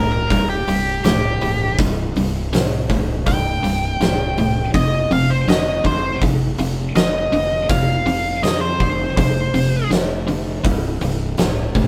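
Gritty and brooding, this clip of blues rock and southern rock finds a power trio playing live in one room with light reverb, moving from a C power chord to F7 and back. A biting, bright, double-tracked overdriven guitar picks a low riff over growly fuzz bass, while an oversized low-tuned drum kit, up front with a fat snare, boomy kick and pumping room sound, comes in at 0.3 seconds. On top, a nasal lead guitar with a parked wah sings a picked, overdriven melody until 9.9 seconds.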